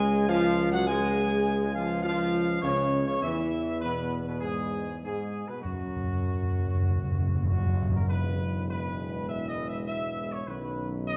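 A mellow, distant trumpet section carries the melody of this triumphant yet solemn classical fanfare from the first moment. Beneath it, punchy French horns and smooth-topped trombones hold sustained chords, and a roomy solo tuba anchors the bass, with all the brass coloured by light vibrato. Between 5.6 and 8.0 seconds, close, round timpani played with soft mallets add an up-front fill, and the whole cut from a longer piece sits in a wet scoring-stage reverb with a dark production.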